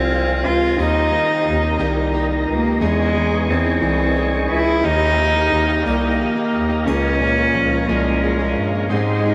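A dreamy mix soaked in a huge ambient reverb, with a faint mains hum beneath it, frames this tender, heartfelt pop fragment in 6/8. Up front, a single bowed cello carries the melody with a soft attack and a pure, floating sul tasto tone, set at a slight distance and trailed by tape echo. Also up front, a close-miked bass clarinet plays the bass line in a breathy, mellow jazz-style subtone with light vibrato. In the background, a felt-muted upright piano adds dark, intimate accompaniment through analog chorus, its action noise audible, while a fingerpicked jumbo steel-string acoustic guitar plays full-bodied arpeggios. A clean tonewheel organ holds sustained chords with key click, chorus vibrato and a slow rotary speaker, as the harmony moves from Dbmaj7 through Eb and Ebadd9 to settle on Db6 across the 9.3 seconds heard.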